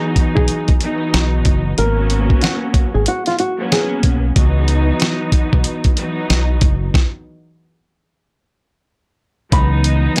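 A compressed, sampler-style drum kit with a thumpy kick, fat snare and hi-hat sits up front in this moody, reflective boom-bap hip-hop excerpt at 93 BPM in C# minor, swung on the 16ths, alongside a round, punchy fingered electric bass with a deep dub tone. A woody, tape-coloured string section with light vibrato and soft attack provides bowed accompaniment throughout, while a boxy, thumb-plucked flamenco guitar with audible finger squeak carries the melody through analog delay until 4.0 seconds and returns at 9.5 seconds. The harmony moves between C#m11 and G#m11 before a stop at 6.9 seconds, and the dry, gritty recording keeps the sound close.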